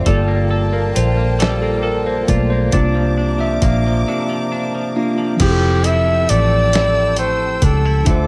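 Light reverb gives a soft sense of space to this late-night, sultry slow R&B excerpt in six-eight. A tine electric piano, clean and up front through its built-in speakers, carries a solo for the first 5.4 seconds, with a break from 4.1 seconds. Beneath it sit a gritty, compressed sampler-style kit with a thumpy kick, a dark, round foam-muted fingered bass, twangy picked clean guitar with analog chorus, and lush bowed strings held low in the mix. At 5.4 seconds a clear flugelhorn with vibrato and slapback echo takes the melody as the harmony settles from Gm9 and C9sus4 onto Fmaj9.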